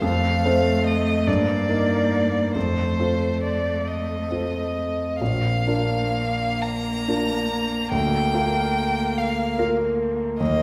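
A close, rich violin sings the melody with vibrato, up front in this serene slow movement for piano trio in Bb major, a 10.6-second excerpt cut from a longer piece and moving in a rubato 6/8 at about 41-50 BPM. Beneath it, a focused bowed cello carries a second line, while a polished concert grand accompanies with deep bass, long sustain and audible, intimate action noise. The harmony drifts from F through Eb/G back to F before settling on Bb and Bb/D, and the players sound as if heard from further back in a recital hall whose reverb rings for about 1.4 seconds.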